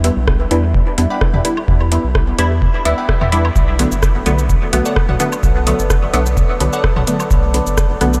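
A lightly swung 4/4 groove from a deep analog kick, entering at 0.3 s, and a booming drum machine with metallic hi-hats, rim click, shaker and dub echo drives this hazy dub techno excerpt. An up-front, muted sawtooth chord stab with chorus, phaser, dub echo and sidechain pumping moves from Em7 to Bm7 over a round, tube-saturated sine sub bass that also pumps, while a crisp, very quiet wavetable stab and faint, tape-toned electronic toms and woodblock add detail. A dark, moody ambient pad with a slow attack, chorus and reverb enters at 5.3 s, all set in light digital ambience.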